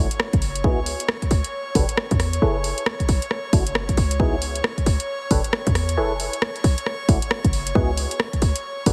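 Light reverb sits over a heavily compressed, radio-like sound in this bouncy, moody UK garage excerpt, a two-step groove at 135 BPM with swung 16ths in C# phrygian. An airy, breathy pad holds sustained chords with chorus and sidechain pumping, while a hollow, nasal organ stab with ensemble chorus, dub echo and a filter sweep moves through C#m11, Em11, F#m11 and a rootless Bm11. A tight, up-front 808-style bass anchors the low end, the punchy analog drum machine brings hi-hat and rim click from 0.1 s, and a layered, tape-warm electronic kick lands from 0.3 s.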